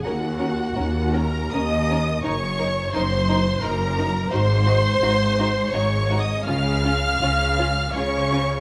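A slow, elegiac movement for string orchestra opens with the full body of bowed strings sounding together: the violin section carries the melody high in its range, heard with an expressive, distant vibrato, while violas, cellos and double basses settle beneath it from the start. Just after, at 0.1 seconds, a second violin line enters, smooth and close, weaving an even inner voice under the tune. The violas give a lush, expressive accompaniment marked by vibrato and portamento, and the cellos hold a smooth, even bass that pairs with the focused, rich bowing of the double basses. Moving in a rubato 3/4 at roughly 74-87 BPM, the harmony drifts from Ebm7 through a rootless Ebm/Gb and Ab to a resting Db, giving the passage a melancholic quality. A moderate scoring-stage reverb lends the ensemble a gentle bloom across this short 8.6-second fragment of a longer piece.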